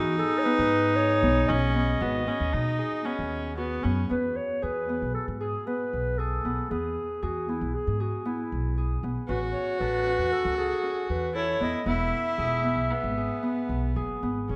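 A mellow, distant clarinet carries the melody throughout this excerpt of playful, hopeful contemporary chamber music, its classical-style solo line sounding roomy against the ensemble. The piece moves at 115 BPM in an uneven 5/4 metre with a straight feel, settled in E major. Beneath it, a rich, up-front viola plays a second line with light vibrato and an airy, biting bow, its nasal, earthy tone dropping out at 4.1 seconds and returning at 9.3 seconds. A fingerpicked Celtic harp rings out warm arpeggios, while a pizzicato upright bass on gut strings gives a woody, dark, thumpy foundation close to the front. The harmony opens on a rootless Eadd9 and Badd9 before settling into E and A, all set in a moderate scoring-stage reverb.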